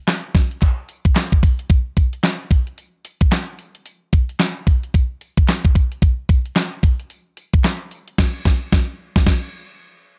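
R&B groove cut from a longer piece, confident and bouncy, swinging on the sixteenths in 4/4. Up front sits a crisp 8-bit drum machine with a thumpy kick, medium-tuned snare, hi-hat, tambourine, handclaps and crash cymbal, its electronic, sampler-style sound roughened by overdrive, while a human group handclap sounds distant in a large room behind it until 7.8 seconds. The dry, close 1970s-style recording ends on a band accent from 8.2 seconds.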